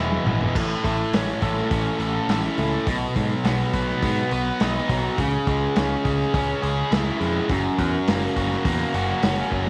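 A straight 4/4 pulse drives this carefree, upbeat indie rock passage, which opens with a drum fill as the chords move from E through A, B and C#m to F#. A bright, double-tracked fuzz guitar sits up front with the riff, over a growling, overdriven picked electric bass and a muffled, lo-fi vintage drum kit with a tight kick and a rolled-off top, which adds another fill at 9.5 seconds. A moderate echo-chamber reverb and small-room ambience give the sound a close, roomy character.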